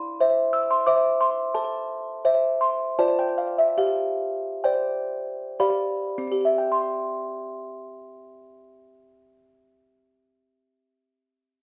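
The recording is dry and close, in the manner of a 1970s studio session, with a touch of small-room ambience. This classical lullaby for solo music box, cut from a longer piece, is in C major and 3/4 time with a straight feel, and its tempo ranges from 51 to 91 BPM. The mood is innocent and dreamy. The music box sits up front with a delicate, tinkling, plucked tone that is also dark and mellow, spans C4 to E6, and carries a slapback echo. The playing slows from 0.5 seconds, with the harmony moving through C/E, Am, Dm7/F, G7sus4 and G7 before settling on C as a new section begins at 6.7 seconds. The music box plays until 10.8 seconds.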